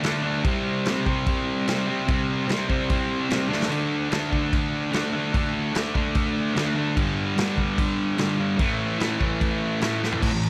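A bright, fuzzed-out electric guitar sits up front, double-tracked and compressed, picking a rowdy riff that moves through C5, D5, G5 and A5 in this raw garage rock clip cut from a longer piece. Beneath it, a vintage acoustic drum kit in a dry studio room drives a straight 4/4 with a tight kick, medium-tuned snare, toms and dark crash and ride cymbals. The drums carry a mid-forward, rolled-off top, with fills at 3.5 and 10.0 seconds.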